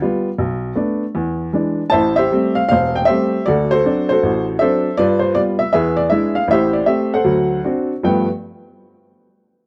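A solo upright piano opens this short cut from a longer solo jazz piece, its tone woody and boxy with short sustain, sitting up front in a dry, close 1970s-style studio sound touched by light reverb and studio ambience. The mood is warm and swinging, at 158 BPM in 4/4 with a swung eighth-note feel that also bends into rubato. The piano covers a span from E1 up to A5, moving through a chain of jazz changes: Bm7, E7, Am7 and D7, then G7, E7, Am7 and D7 again. At 8.0 seconds the music arrives on a G9 chord as the brief second section begins. The piano stops at 8.3 seconds.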